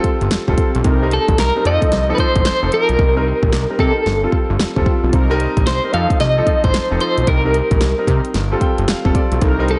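Punchy and bouncy, this new jack swing R&B cut moves at 112 BPM in 4/4 with a swung sixteenth feel, sitting in C dorian around chords like Cm7, F7 and G9sus4. Up front, an electric guitar at the edge of break-up carries the melody with a twangy, picked tone, coloured by tremolo and delay. A clear concert grand piano supplies polished accompaniment with deep bass and short sustain, adding a fill from 8.3 to 9.4 seconds, while mellow synth brass stabs sit in the background with a round, chorused, vibrato-tinged sound. The layered pop drum kit brings a punchy kick, fat snare, handclaps and hi-hat, with the hats dropping out from 3.0 to 5.1 seconds, and a thick, saturated analog bass with a nasal filter pluck joins at 0.2 seconds. Light reverb and a dark, warm production round off this short excerpt from a longer piece.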